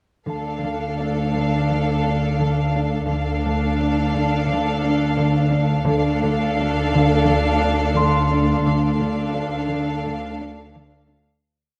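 Cinematic suspense film score, ominous and uneasy, where the string sections enter together at 0.3 seconds over a single chord, bowed sul tasto with tremolo in the upper voices: a rich, floating violin section carries the melody above a darker, woody second violin line, while an intimate viola section fills in the accompaniment. Beneath them a background cello section plays a pulsing ostinato, a second cello section holds sustained bass notes, and a double bass section doubles the bass line, as a celesta adds sparse, bell-like single notes. Close, detailed microphones and light reverb frame the whole piece, which fades out from 8.7 to 11.5 seconds.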